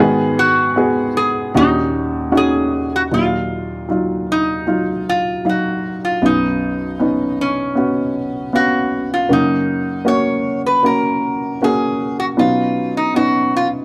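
A warm baby grand piano opens this heartbroken, longing pop excerpt at 78 BPM in Eb minor, its intimate, short-sustained chords carrying audible action noise as they move from Abm7 and Ebm7 through Ebmadd9, Badd9 and Gb. At 0.4 seconds a metal-body resonator slide guitar enters up front with the melody, its bright, nasal, metallic tone shaped by fingerpicks and slide. The dry, close sound of a small 1970s-style studio room keeps both instruments near and personal.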